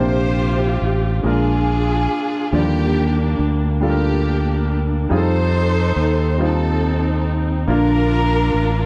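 A bowed string section, concert grand piano and fingered electric bass all sound together from the very start of this short slice of slow gospel in a lilting 6/8 swing-free pulse. The strings carry the melody as a focused, vibrato-rich ensemble with a smooth top, sitting up front and trailed by a slapback echo. Beneath them the piano supplies accompaniment with a clear, natural tone, deep low end and short sustain, while the bass sounds punchy, direct and amped, placed prominently in the mix. The harmony moves through rich extended chords, from Bb69 and Bb7 to Ebmaj9 and F9 before settling on Bbmaj7 at 7.7 seconds. Captured as a dry, close recording in a 1970s studio style, the passage feels jubilant and soulful, and it is cut from a longer piece.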